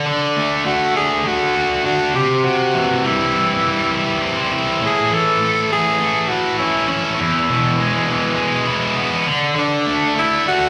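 A straight 4/4 pulse at 101 BPM drives this short rock clip, cut from a longer performance, with a driving, confident mood. A tight, brilliant electric guitar, distorted, picked and double-tracked, sits up front with a riff spanning E2 to F#4, touched by a slapback echo. From 0.1 seconds a raspy tenor saxophone takes the solo melody between C#4 and A4, playing in a pop style with light vibrato, a gritty, punchy bite and a smooth top, its line trailed by tape echo. The harmony moves from D to C, then A and E, landing on a D5 at 9.3 seconds. It sounds like a live gig heard through the venue's PA, with moderate club reverb giving the room a sense of space.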